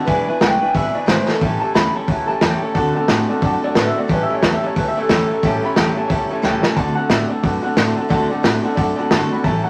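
Rockabilly with a rollicking, retro swing, in which a twangy, slightly broken-up electric guitar riff and a lo-fi lead electric guitar sitting in the background ride over a full-bodied picked steel-string acoustic guitar, a mellow, slightly detuned upright piano, a woody, thumpy gut-string upright bass and an up-front, muffled vintage drum kit that fills at 1.3 and 6.4 seconds, all set in a club reverb with vinyl crackle.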